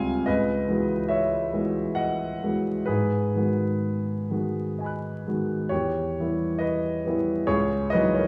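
Soaked in a wet scoring-stage reverb with vinyl crackle and a small-room ambience, this luminous, serene excerpt of impressionist classical solo piano unfolds in a rubato 3/4 at about 63-73 BPM, its polished, present grand piano sitting up front across a range from C#2 to F#6 as the harmony moves from C#m11 through G#m7 at 2.9 s and Em6 at 5.7 s before returning to C#m11 at 7.5 s.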